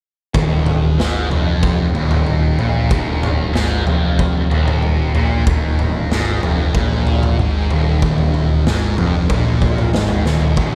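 A raw garage drum kit sits up front in this hazy, trippy psychedelic rock fragment: punchy kick, medium-tuned snare and toms, saturated and gritty in a bright, pumping stone room with a rolled-off top, capped by a fill at 10.3 seconds. A thick, double-tracked fuzz guitar, also up front, picks a low riff on an Eb5 chord through distortion and phaser, while a round, overdriven fuzz bass sits in the background. The straight 4/4 groove carries little reverb, and the clip is cut from a longer piece.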